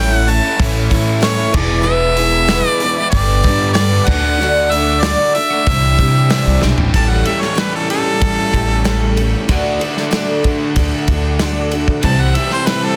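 A dense, heavily limited small-room mix carries this open-road, jangly folk and heartland rock excerpt in A mixolydian at 94 BPM, where a clear, up-front harmonica with light vibrato and tape echo leads over bright picked acoustic guitar with audible finger squeak, a double-tracked overdriven garage guitar riff, woody pizzicato upright bass, a very quiet tonewheel organ holding smooth chords through a slow rotary speaker, and a natural country drum kit with dark cymbals and a tight kick, whose fill at 6.6 s ushers in a harmonica solo from 6.9 s over chords moving from A7 to D and C.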